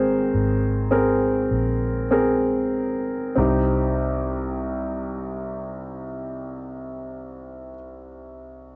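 A warm grand piano provides the accompaniment in this brief, longing pop excerpt, sounding present and polished up front, with a cassette-tape color on its tone as it spans from C2 to C5. Beneath it, a vintage muted fingered electric bass sits slightly lower in the mix, dark, round and punchy with a foam-muted, amped character, moving between Ab1 and C2. The piece moves slowly in 4/4 at roughly 46 to 54 BPM in C minor, with the tempo slowing over the first 3.4 seconds as the harmony rests on Abadd9 before settling onto Cm. The bass drops out at 7.7 seconds, leaving the piano to carry on until 8.8 seconds. A moderate studio reverb and the homespun feel of a cassette recording lend the melancholic mood an intimate, slightly worn quality.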